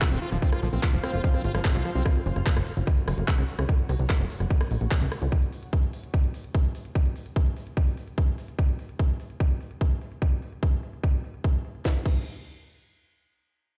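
A squelchy, distorted acid bass riff with dub echo and sidechain pumping opens this hypnotic, intense psychedelic trance excerpt, sounding alongside a tight, up-front kick, a garage kit of cracking snare, crisp hats, handclaps, rim clicks and crash cymbals under low-pass filtering, and a very quiet downlifter that falls away by 2.1 seconds. A punchy, wave-folded analog bass with a fast filter pluck drives the low end while a cloudy, blurred granular pad drifts in the background, fading out by 5.3 seconds. From there the drums carry on alone to 12.2 seconds, with everything ringing through a stone-room reverb as though played on a big sound system in a bare room.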